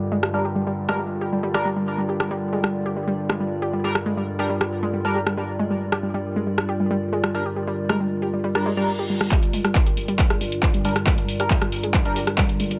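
Driving peak-time techno at 137 BPM in G minor, this hypnotic, intense passage, cut from a longer piece, stays on a G minor chord. A nasal analog drone and a nostalgic, warbling tape-like pad sit under a lo-fi, detuned pluck riff with dub echo and an edgy polysynth with oscillator sync playing stabs, each pumping against the sidechain. An up-front analog drum machine plays handclaps, hi-hat and rim click in a moderate plate reverb; a reverse cymbal at 8.6 seconds leads into a build-up at 9.3 seconds, where a layered, punchy kick enters with a drum fill and a filter sweep on the synth.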